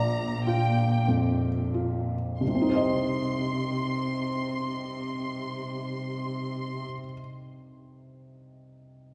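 A cinematic excerpt in C minor opens with all three parts at once: a violin section carrying the melody high between G5 and C6, a felt-muted upright piano, and a cello section holding the bass. The mood is longing and bittersweet, set in a slow, rubato 6/8 at about 29-34 BPM counted in dotted quarters, and the opening seconds slow down further. The harmony moves from Bb to C minor at 2.4 seconds, where a second section begins. The violins sound rich and focused with vibrato and a smooth top, while the cellos are even and close, their bowed line sitting between Bb2 and C3. The piano is soft, mellow and intimate, placed up front, and it lingers alone after the strings stop at 6.8 seconds, closing at 9.1 seconds. A scoring-stage reverb with a 2.1-second decay puts the listener further back in the room, lending the whole a spacious, wet sheen.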